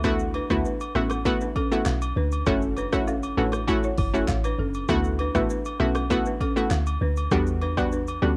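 Romantic and breezy, this short afrobeats clip at 99 BPM in D major moves through D69, F#m7 and Em9 chords, with an up-front, warbling vintage sawtooth analog pluck carrying a chorus-treated filter sweep, a woody, buzzing balafon riff struck with hard rubber mallets and touched by analog delay, a deep, round, dark FM log drum bass with a noise layer, a punchy, layered electronic deep house kit of kick, handclaps, hi-hat, rim click and shaker, and acoustic agogo bells and woodblock entering at 0.3 seconds, all captured dry in a cassette home recording.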